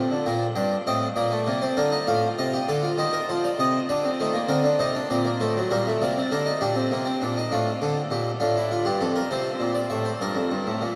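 Classical baroque-style three-part fugue for solo harpsichord in 12/8, contemplative yet driving as it moves through a chain of harmonies in G minor in this brief cut from a longer piece. The Flemish-style instrument sits up front with a full, brilliant pluck from its three sets of strings, spanning from its low bass register up to bright upper notes. A huge, wet reverb places it in a vast, echoing space, letting each line ring and blur into a resonant haze.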